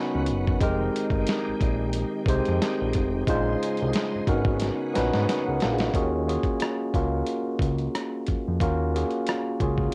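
A barky tine electric piano, clean and up front through a combo amp, opens this soulful, late-night neo-soul and R&B excerpt alongside a bright, shouting tonewheel organ with key click, chorus vibrato and a slow rotary speaker, both carrying a cassette-tape grain. Moments later a fat analog bass arrives, thick and mellow with a sawtooth and square-wave tone, a moving notch and tube saturation. A dusty, sampler-style drum kit follows with a compressed, gritty sound: a thumpy kick, a medium-tuned snare, rim click and hi-hat, re-recorded in a large room and placed up front. At 90 BPM in 4/4 with a light swing on the sixteenths, the harmony moves through rich minor eleventh chords, starting with a rootless Abm11 and passing through Fm11 and Bbm11. A drum fill runs from 4.6 seconds, and the organ's sustained chords stop at 5.9 seconds as the music shifts to Ebm11 for the next section. Light reverb and a home-cassette recording give the whole excerpt an intimate, lo-fi character.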